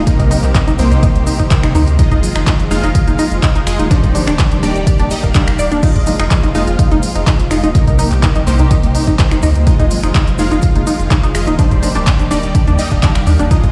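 A straight pulse from a punchy, overdriven electronic kick and a layered deep house kit of hi-hat, handclaps, finger snaps and crash drives this bittersweet, emotional progressive house excerpt, where a round, nasal analog bass and detuned supersaw stabs with delay pump against the sidechain, a tight sequenced sawtooth synth adds chorused, delayed arpeggios, a biting symphonic string section holds sustained chords in the background, and saturated hard-hand congas and a grainy, very quiet cabasa sit far back in a stone-room reverb.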